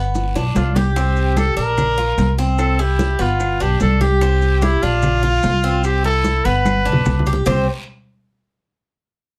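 A punchy solo trumpet leads this warm, relaxed slice of Cuban son and guajira, entering at 0.6 s with a pop-style vibrato that sits up front yet sounds distant and roomy. It moves at 147 BPM in a straight 4/4 in C major, cycling through G, Csus2, Bb and C under light reverb. A pizzicato upright bass with steel strings anchors the low end, growly, thumpy and dark, while a bright, metallic Cuban tres plays picked arpeggios on double strings, some doubled at the octave. In the background, ringing congas sit close and dry beside round, low-tuned bongos played with soft hands, and mellow, grainy maracas add texture. A raspy guiro sits at a very quiet level, and woody claves enter at 1.4 s, both compressed and saturated. Drum fills open the passage and return near its close in this brief excerpt cut from a longer piece.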